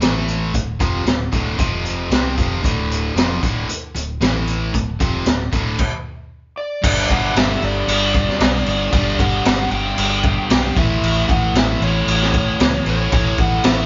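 Hard rock with a powerful, swaggering mood, this excerpt moves at 114 BPM in a straight 4/4, cut from a longer piece and played as a band live in one room with light reverb and a dulled top end. Two picked rhythm guitars drive the riff from the start: a bright, overdriven cranked stack guitar and a compressed, scooped distorted electric guitar sitting in the background. Beneath them, a vintage fingered electric bass gives a dark, round, foam-muted tone, while a raw garage drum kit sits up front with a punchy kick, a high-tuned snare, hi-hat and crash, its sound gritty, saturated and mid-forward. The riff moves through power chords on A, D and F before a stop from 5.8 to 6.8 seconds breaks the groove. Near the end of that stop, at 6.6 seconds, a dark, overdriven lead guitar through a small cranked amp enters with a high melody. The band then returns on G, and the lead carries the second section until the chords settle on A.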